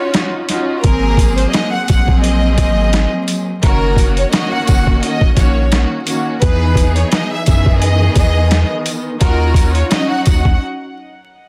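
Bowed strings open this moody, reflective boom-bap hip-hop excerpt at 86 BPM with a lightly swung sixteenth feel: a close, intimate violin section carries the melody in sul tasto with light vibrato, plate reverb and tape echo over a smooth-topped string ensemble with portamento and cassette-tape coloring. Sampler-style drums arrive at 0.1 s, pitched down and overdriven with a thumpy kick and high-tuned snare up front, a round, dark analog bass joins at 0.8 s, and a jingly tambourine sits in the background. The dense, heavily limited master carries vinyl crackle as the chords move from Ebm9 through Ab9, Gb6 and Emaj7.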